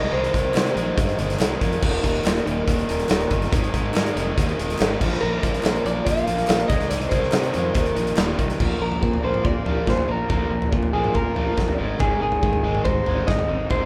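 Recorded as a band playing live in one room with light reverb, this upbeat, carefree indie rock excerpt sets a growly, punchy fuzz bass and a dark, smooth, up-front big-room drum kit under two bright, picked overdriven guitar riffs (one raw, the other compressed and tucked in the background), while a slightly broken-up lead guitar carries the melody, pausing from 1.6 to 5.2 seconds, and a crisp, very quiet group handclap sits in until 8.3 seconds.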